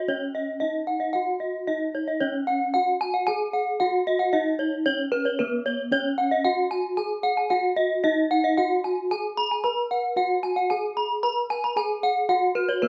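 A bright bronze metallophone struck with a horn mallet rings out arpeggios over a second, wooden-mallet metallophone carrying the melody, both up front with paired tuning that sets off shimmering beats, in a ceremonial gamelan excerpt played live in a stone room with moderate reverb and an airy, metallic glow.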